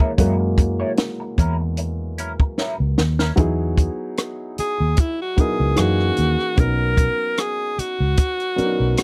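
A dry, close 1970s-style studio sound frames this lush, warm soul groove at 75 BPM with a gentle sixteenth-note swing, where a mellow dark grand piano carries the chords, a compact cocktail kit with a high-tuned snare and punchy kick sits up front and plays a fill at 2.6 seconds, a round, foam-muted fingered bass anchors the low end, a slightly broken-up, lo-fi electric guitar riff with wah and subtle chorus drops away at 3.3 seconds, and an edgy, forceful alto saxophone with vibrato takes the melody from 4.6 seconds as the harmony moves from F#7 through Emaj7 and F#13 to Bmaj9.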